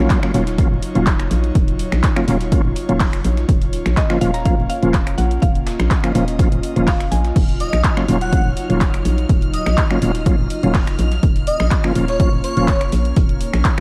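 Hypnotic and late-night, this deep house excerpt rides a punchy, overdriven kick and a hollow, knocking FM bass under bright, reedy tonewheel organ stabs with fast rotary swirl and tape echo, an airy, breathy pad pumping against the beat, a layered kit of finger snaps, handclaps, hi-hat and crash with a gritty sampler-style snare tucked far back, a woody mallet-like pluck melody from 4.0 seconds, and a dreamy detuned lead with a shimmering string machine arriving near 7.4 seconds, all over a bed of vinyl crackle.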